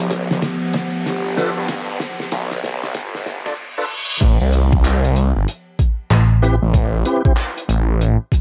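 This lightly reverberant home recording has a cassette-tape haze and a thin, high-passed low end. It is a swaggering, funky glitch hop cut taken from a longer piece, swung on the sixteenths in 4/4. It opens as a build-up over a G7 chord: a warbling, nostalgic pad of detuned square and triangle tones shimmers with chorus and sidechain pumping, while a riser and reverse cymbal, a filter sweep and a drum fill from a dry, dark 70s kit with fat snare, handclaps, hi-hat and crash gather toward the drop. Up front throughout, a thick, swirling detuned saw bass carries phaser and tube saturation, and an overdriven, layered electronic kick knocks hard beneath it. A tonewheel organ enters with full, lightly driven stabs at 1.4 seconds, showing key click, slow rotary spin, tape echo and sidechain pumping. The drop lands at 4.2 seconds on an Am9 chord, and a snappy, metallic FM slap bass jabs in briefly at 6.1 seconds.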